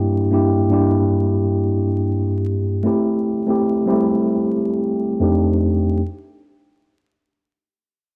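A worn, slightly out-of-tune tine electric piano sits up front, lightly overdriven as if through built-in speakers, and carries a filter sweep across the whole 6-second hip hop excerpt, moving through Gm6, Am7 and F13 over a swung sixteenth-note feel, its dreamy, nostalgic mood deepened by moderate spring reverb, cassette-tape character and vinyl crackle from a home recording.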